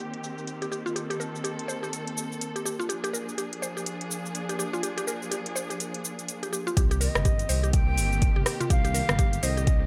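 Driving and spiritual, this afro house cut from a longer piece moves at 124 BPM in 4/4 with a 16th-note swing. It opens on muted, con sordino strings holding dark, veiled chords over Cm7 and Bb7, with sidechain pumping and a filter sweep, while a tape-warm afro-pop kit of metallic hats, rim click, shaker and toms plays through a low-pass filter. At 0.6 seconds a woody, round FM synth pluck enters with arpeggios, colored by chorus, pumping and dub echo. The drop arrives at 6.8 seconds as a deep, up-front electronic kick and a smooth, mellow sawtooth-and-triangle synth bass join, the bass also pumping, as the harmony returns to Cm7. At 7.0 seconds an airy, distant silver flute adds a straight-toned melody with a crisp attack and dub echo, all inside a light reverb.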